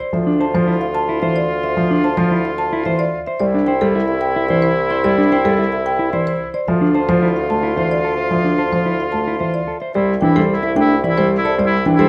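Propulsive and hypnotic, this minimalist classical pattern music in three-four time cycles through Dm7 and C chords, with a woody, close-miked marimba carrying the melody over clean, fingered electric guitar arpeggios. A dark grand piano sits up front as accompaniment, its short sustain and audible action noise giving it an intimate feel, while a clear oboe with light vibrato traces a second line and a warm bassoon provides the bass. Moderate large-studio reverb surrounds the ensemble in this passage cut from a longer piece.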